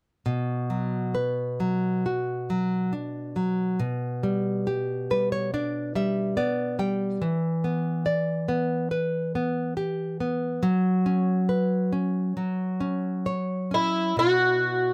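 A moderate studio room frames this passionate, longing fado-style ballad in B minor at 69 BPM, where a bright, small-sounding fingerpicked nylon-string guitar carries the rubato accompaniment up front from 0.3 seconds, adds a fill at 4.7 seconds and moves through chords such as Em7 and F#sus4, before a dark, boxy, octave-doubled fingerpicked twelve-string acoustic guitar with plate reverb, a hint of swing and audible finger squeak enters up front at 13.7 seconds for a brief, shimmering melodic phrase.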